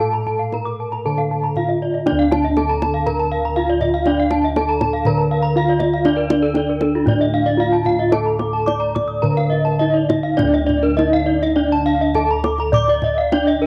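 Balinese gamelan in D pelog at 102-120 BPM, brilliant and hypnotic, cut from a longer piece: a dark, smooth bronze metallophone struck with a wooden mallet carries the melody, while two more metallophones played with horn mallets spin arpeggios, one boxy and up front, the other bright and airy. All three ring with the shimmering beats of paired tuning and carry a cassette-tape colour, over round, beating bossed gongs up front in the bass and a tight, close and dry kendang played with hard hands. The home cassette recording has light reverb, and the opening material returns at 10.4 seconds after a longer middle passage.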